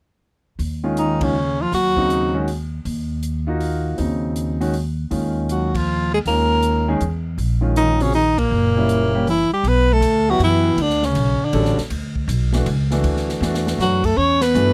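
Dry and close, with little reverb, this modal jazz excerpt in a swinging 3/4 carries a spiritual, searching mood. A woody, growly pizzicato upright bass sits up front alongside a clear concert grand piano whose deep bass and long sustain fill out the harmony. The big-band drum kit plays softly underneath with an airy polish, dark cymbals and a punchy kick. From 1.0 s a breathy tenor saxophone leads with scooped notes, while a mellow bass clarinet with light vibrato plays a second line beneath it, the two entering and resting at the same moments. The band hits a few accents together, the harmony shifts to a new colour at 9.7 s, and a short drum fill at 13.4 s brings the horns back in.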